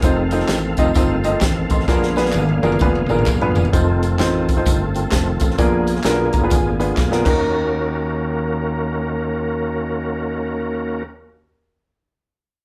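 Uptempo gospel at 130 BPM in Eb minor, swung and fervent, this short cut from a longer piece moves with soulful urgency over dominant chords that settle onto Ebm7 near the end. A full, thick tonewheel organ sits up front holding sustained chords, its fast rotary speaker, light overdrive, chorus vibrato, key click and percussive attack giving it a churning presence. A worn baby grand piano with long sustain plays accompaniment across the whole passage and steps forward with a fill from 6.0 to 7.4 seconds. Underneath, a growly, punchy fingered electric bass anchors the low end, while an airy, polished acoustic drum kit, with a high-tuned snare, punchy kick, hi-hat, crash and toms, drives the groove and plays fills from 1.9 to 3.7 and 7.0 to 7.4 seconds before dropping out at 7.3 seconds. Maracas and a group handclap sit close but in the background until 7.7 seconds, leaving piano, organ and bass to carry the final bars in a live-room sound with moderate studio reverb.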